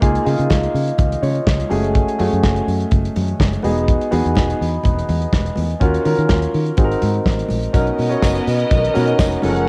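A dark, mellow grand piano with long sustain sits up front in this celebratory, danceable disco cut at 124 BPM, moving through rich chords from Db69 to Ebm9 and Ab7, backed by a round, foam-muted fingered electric bass and a dry, damped 70s drum kit with a tight kick and a rolled-off top that carries a cassette tape colour. Very quiet, high-tuned congas with a thin skin sound distant from 0.3 seconds, and at 7.7 seconds a lush, woody violin section bowed sul tasto with vibrato enters alongside a jingly tambourine in the background as the harmony lands on Cbmaj7. The home cassette recording has moderate spring reverb and small room ambience, and it is cut from a longer piece.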